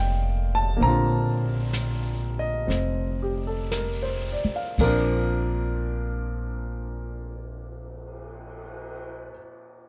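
A clear grand piano accompanies this short excerpt from a longer jazz ballad, sitting up front with an intimate, natural tone and audible action noise across a span from Bb2 to Bb5. The mood is intimate and romantic, in Bb major at a slow 55-68 BPM in 4/4 with a lilting swing on the eighth notes, and the tempo slows during the first 4.8 seconds. A pizzicato upright bass on gut strings supports it from the start, woody and thumpy, holding low between F1 and Bb1 and stopping at 9.3 seconds. A brush kit enters at 0.8 seconds, quieter and airy, with dark cymbals, a medium-tuned snare, a punchy kick, hi-hat, crash and a cymbal swell. The harmony moves from Bbmaj9 to Bbadd9 as the second section arrives at 4.8 seconds, all set in a dark, dry production with little reverb.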